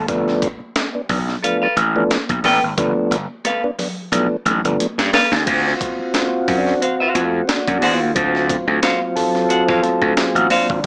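Funk at 89 BPM with a swung sixteenth feel, where a growly, overdriven slap bass and a compressed, pitched-up breakbeat kit with a thumpy kick and high-tuned snare drive the groove, distant high-tuned congas sit in the background, a twangy clean guitar joins at 1.4 seconds, and a round, dark tonewheel organ with key click and slow rotary speaker moves from stabs over G9 to a solo over D7#9 at 5.5 seconds after a drum fill, all through a small-speaker sound with light reverb in a gritty excerpt cut from a longer piece.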